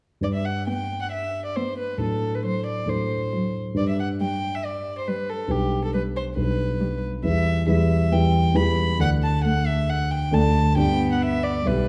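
A violin and a concert grand piano begin together at 0.2 s in this lively, spirited excerpt from a quick classical-period movement for piano quartet, moving at 136 BPM in 4/4 with a rubato feel and tuned to A4 = 442 Hz. The solo violin carries the melody up front, its bowed line rich, pure and floating, played sul tasto with a soft attack. The piano, also up front, supplies a mellow, smooth accompaniment with deep bass, short sustain and a vintage character. A single cello enters at 0.7 s with a second line, bowed sul tasto with light vibrato and an airy, intimate tone that sits close yet in the background. The harmony starts in G major, passing through D7/A and G/B, then turns to E minor at 7.3 s before settling back on G. A moderate recital hall reverb and a dark production surround the trio.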